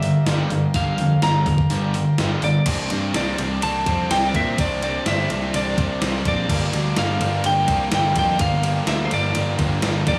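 From the first beat, a bright, twangy lead guitar at the edge of break-up carries the melody over a biting, double-tracked overdriven guitar riff, a round, fuzzy picked bass, a gated 80s digital drum machine with a thumpy kick and gated-reverb snare, and very quiet, buzzy combo organ chords, giving this carefree, wistful indie rock excerpt at 126 BPM a digital studio ambience as the harmony moves from Gm7 to Csus2 at 2.7 seconds and back at 6.5 seconds.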